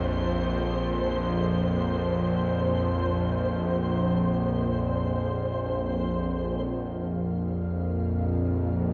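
Dark ambient drone in free time, unsettling and dark, where an up-front bowed-like drone, string-like and tense with vibrato, sustains low around a Bbsus2 chord while a flickering grainy texture hovers quietly above, both soaked in a lush hall reverb throughout this brief cut from a longer piece.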